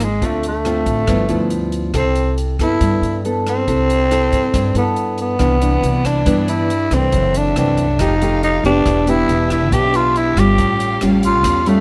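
Bossa nova in C major at 139 BPM, romantic and relaxed, taken from a longer piece. A growling tenor saxophone carries the melody up front, breathy and raspy with subtone, vibrato and scooped notes over a smooth top. A thumb-plucked nylon-string guitar supplies classical-style accompaniment through chords such as Dm7, G13 and C6, while a woody, growly pizzicato upright bass sits low beneath it. A swinging big-band drum kit keeps time with hi-hat, rim click and a punchy kick, its sound airy and polished. At 5.4 seconds a lush, bowed violin section enters in the background with distant, expressive sustained chords, as the harmony moves through Cmaj9, F#m7b5 and A7b13. The recording is close and detailed, with little reverb.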